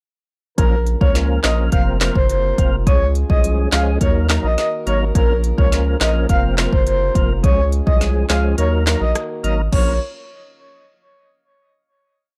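A dancehall piece in Bb minor at 105 BPM, bouncy and hypnotic, built on a chorus that runs from 0.6 seconds and settles on a final chord at 9.7 seconds after a short break. An electronic afro-pop drum kit sits up front with a deep kick, woody snare layered with handclaps, crisp hats, rim clicks and crash, playing a syncopated dancehall beat with the snare answering the kick. A saturated sine sub bass, thick and sustained, rides beneath with syncopated low lines and slides. A percussive tonewheel organ adds lightly overdriven syncopated chords with key click, chorus vibrato, a slow rotary speaker and sidechain pumping, while a breathy, flute-like synth lead with a soft attack, vibrato and chorus carries the syncopated hook. A very quiet French horn section holds a tight, close-miked pad over the Bbm, Fsus4, Db and Ebm progression, and the whole production is dark and dry.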